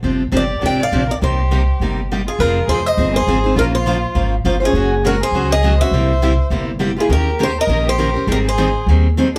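A bright steel-string acoustic guitar with fresh strings and finger squeak picks the accompaniment over a woody, thumpy gut-string upright bass from the start of this virtuosic, bittersweet gypsy-jazz swing fragment, joined at 0.3 seconds by a bowed violin with vibrato and portamento on a soft-edged second line and at 0.4 seconds by a boxy picked swing guitar carrying the melody up front, all set in a reverberant club ambience heard from further back in the room.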